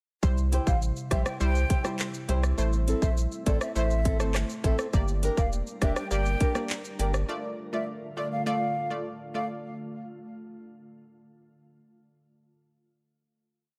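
A sparse dancehall beat in straight 4/4 drives this short, bouncy and hypnotic piece, built from a tight kick, metallic hats, rim clicks, handclaps and shaker on an electronic, tape-warm island pop kit that sits up front until 7.3 seconds. Beneath it, a deep, round sine sub bass plays a syncopated low line with slides, while a bright, detuned analog pluck with chorus adds syncopated chords over a C, Am, Gm and Dm progression. A fingerpicked acoustic flamenco guitar enters at 0.5 seconds with an off-beat chop, and a glassy, ethereal FM pad with ensemble chorus, built-in reverb and sidechain pumping holds dark sustained chords underneath. From 0.7 seconds a breathy, mellow jazz flute with vibrato and digital delay carries a syncopated hook in a distant, hollow tone. The drums, bass and guitar stop around 7.2 seconds, leaving the pluck, pad and flute to ring out over the final Dm in a digital ambience.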